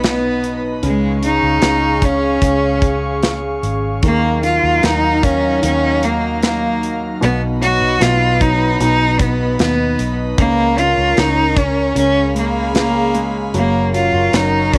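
This pop ballad carries an emotional, heartfelt mood. It is cut from a longer piece and has the feel of a home recording on cassette with light reverb. A bright, biting cello sings the melody up front, one bowed player with vibrato and intense feeling, its tone colored by cassette tape and plate reverb. Behind it, an intimate grand piano plays accompaniment in the background with audible action noise, while an airy, breathy pad holds soft, detuned sustained chords with a slow attack, long release and chorus. A dark, round, foam-muted electric bass gives amped weight to the low end, and an acoustic studio drum kit sits up front with a punchy kick, a medium-tuned snare and hi-hat, polished yet caught in a small room. The harmony moves from B through C# and D#madd9, back to B, then on to C#69 and C#7 before arriving on F# at 13.5 seconds.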